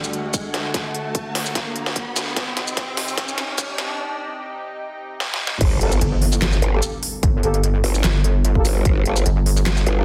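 An aggressive, formant-filtered growl bass and a pulsing, distorted pluck wobble bass crash in at the drop from 5.6 and 6.0 seconds in this chaotic, heavy half-time wobble dubstep excerpt, joined by mellow, distant brass stabs with delay. Throughout, a lush, detuned unison pad with chorus and sidechain pumping holds sustained chords, while a riser climbs over an up-front dubstep kit of crisp hats, deep clipped snare, handclaps, shaker and crash, with drum fills and a break leading to the impact. A punchy, layered electronic kick sits beneath it all in a dense, heavily limited modern master with light digital reverb.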